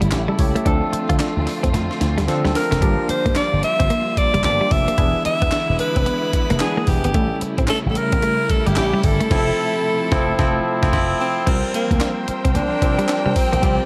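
A swung sixteenth-note groove at 111 BPM in 4/4 drives this punchy, bouncy new jack swing passage, built on a gritty, pitched-up breakbeat drum kit with a thumpy kick, handclaps and crash, and a bright, amped slap bass pushed through an envelope filter. A barky tine electric piano and a clean, direct-recorded guitar riff with analog chorus sit over smooth bowed studio strings in the background, several parts bathed in shimmer reverb, before a drum fill at 1.7 seconds ushers in a close-miked alto saxophone at 2.6 seconds, playing a clear, jazz-style lead with vibrato and scooped notes. A band accent lands at 9.3 seconds as the chords move from A7 through Dm7 and Gm7 toward Fmaj7 and a closing C7sus4, inside a dark production with moderate plate reverb.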